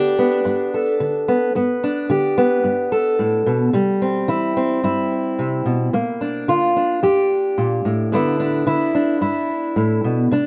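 Gentle and hopeful, this short folk excerpt moves at 110 BPM in a straight 4/4 feel. A single fingerpicked steel-string acoustic guitar carries the whole piece, sitting up front with a dark, woody tone that carries the character of old strings, ranging from F2 up to A4. Tape echo trails the guitar, and light reverb gives the recording a sense of space. The harmony starts on G, shifts to C at 3.7 seconds as a second section begins, then passes through Bb before settling on G6 at 8.1 seconds. Cut from a longer piece, it ends at 10.5 seconds.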